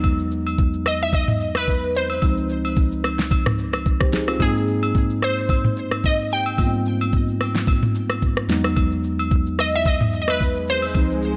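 Set in a light reverb, this relaxed amapiano excerpt moves at 110 BPM with swung sixteenths, built on an up-front electronic drum kit with a knocking kick, fat snare, rim click, shaker and toms, and close, acoustic agogo bells. A mellow, clean tine electric piano carries the Emaj9, Dbmaj9 and Abmaj9 chords, while a glassy, crystalline wavetable pluck, detuned with a sub octave, filter sweep, chorus and delay, enters at 0.9 seconds with a bright melody. An electronic swell enters faintly in the background from 10.6 seconds.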